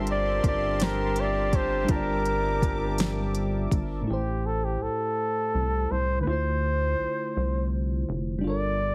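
A mellow FM electric piano, a bright analog pad and a clear horn section open this late-night, sultry slow R&B fragment in G dorian, moving in a relaxed 6/8 at 55 BPM. A breathy flugelhorn carries the melody from 0.1 s, intimate and up front, with vibrato and scooped notes, while a rubbery square-wave bass holds down the low end with a hollow, bouncy filter pluck. A smooth, produced drum kit, with a soft kick, fat snare and silky hi-hats, plays alongside the tight horn stabs and the chorused, tremolo-touched pad until around 4 s. From there the second section leaves the flugelhorn, the bass and the round, chorused electric piano to move through Am7, Dm9 and Gm9 on their own. Light digital reverb surrounds the parts, and heavy multiband compression gives the mix a dense, radio-ready sheen.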